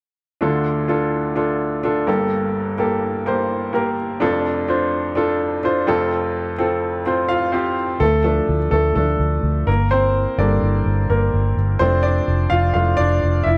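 A lightly swung 16th-note feel at 126 BPM in 4/4 drives this dramatic, bittersweet pop fragment in D minor, cut from a longer piece. A clear, intimate baby grand piano carries the accompaniment from 0.4 s, its audible action noise keeping it natural and up front as it moves through Dm, Gmadd9, Dm/F and F. At 8.0 s the harmony returns to Dm and the piano steps forward into a solo, while a vintage fingered electric bass enters in its low register to lay the foundation. The bass is dark, round and punchy, with a foam-muted, amped tone that sits up front beneath the piano. Both parts share a moderate scoring stage reverb blended with small room ambience, giving the close sound a sense of space.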